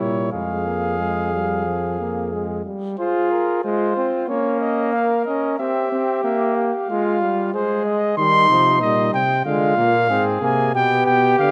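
Heard close and detailed within a concert hall's moderate reverb, this serious, contemplative brass canzona in F minor moves at 93 BPM in a straight 4/4, cut from a longer piece. A mellow, soft-attacked cornet carries the melody up front, while a dark trumpet with light vibrato sings the second line beneath it and a clear, smooth-topped trombone supplies the accompaniment. The warm bass trombone anchors the ensemble, dropping out at 2.6 seconds and returning at 8.2 seconds as the harmony moves from F minor through C minor and a diminished chord toward G over B.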